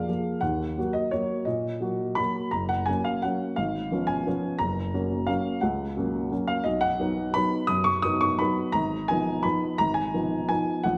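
An upright piano plays alone from the start, its woody, intimate tone sitting up front with audible action noise and a slightly detuned, natural character. This is a wistful, elegant classical waltz in 3/4 at about 173 BPM, played with rubato so the beats fall unevenly and the pulse breathes. The harmony moves from Ebm through Gb, Db7/Ab and B before settling on Fm7b5/Ab, and the piano ranges from Gb1 up to D#6. A wet recital hall reverb, with a decay of 1.4 seconds, surrounds the instrument and adds a sense of space. The 11-second excerpt stays within a single section, cut from a longer piece.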